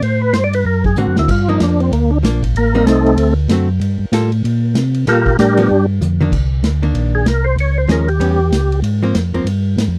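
A fat, lightly overdriven tonewheel organ with percussive key click, chorus vibrato and slow rotary speaker opens this soulful, late-night soul jazz organ trio excerpt at a swinging 191 BPM in G minor, sitting up front over a round, mellow organ bass line and a small-room vintage drum kit with a punchy kick and dark, rolled-off cymbals, before a clean, picked, compressed hollow-body jazz guitar joins the accompaniment at 1.0 seconds, brief drum fills mark the phrases, and the harmony shifts to C minor at 6.3 seconds in a dry, close sound.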